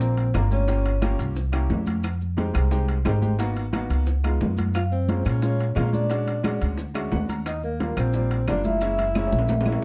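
A woody, up-front pizzicato upright bass anchors this lively, danceable Afro-Cuban jazz excerpt at 177 BPM, beneath a clear, short-sustained baby grand piano accompanying throughout with a fill at 6.8 seconds. A mellow, ringing soft-mallet vibraphone carries the melody with a raspy, growling tenor saxophone second line. Both sound briefly at the start, and they return at 4.7 and 4.8 seconds over background congas, round low-tuned bongos, vintage metal-shell timbales, grainy maracas and dry claves, until a drum fill at 9.2 seconds in a dark production with light reverb.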